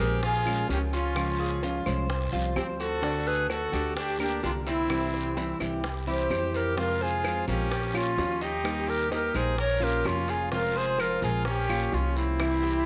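Latin music in the Cuban son and guajira vein, this danceable, straight 4/4 passage at 128 BPM is cut from a longer piece and moves through changes such as Bbm7, Db, Gm/D, Fm and Eb. A hollow, airy silver concert flute carries the melody with vibrato, a soft attack and lifted highs, while a brilliant trumpet plays a punchy second line in a forceful pop style, its scooped notes and vibrato sitting present in the mix. Underneath, a full-bodied nylon-string guitar with fresh strings fingerpicks a deep classical accompaniment, and a Cuban tres, metallic with picked double strings, some octave-doubled, adds arpeggios from the background through a tape echo. The pizzicato upright bass is up front, dark, growly and thumpy, with steel strings and a woody tone. A raspy guiro and woody claves sit in the background, and tight, high-tuned bongos played with soft hands enter at 0.2 s, very quiet, all wrapped in a moderate plate reverb.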